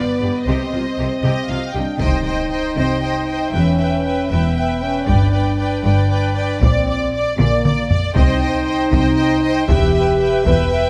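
Dark and epic, this cinematic orchestral film-score cue moves at 78 BPM in a straight 6/8, rooted in C minor and cut from a longer piece. A clear violin section carries the melody with light vibrato while a lush second violin line and a rich viola section fill in beneath, all bowed smoothly and evenly. Mellow French horns hold tight sustained chords, and distant cellos and double basses anchor the bass from the background. At 2.0 seconds a taiko ensemble enters with hard sticks and a small-room sound, joined by a huge, bright impact sitting low in the mix, and the drums break into a fill around 7.4 seconds. The harmony shifts from C minor through E minor, G and Bb before returning to C minor, all set in a moderate scoring-stage reverb.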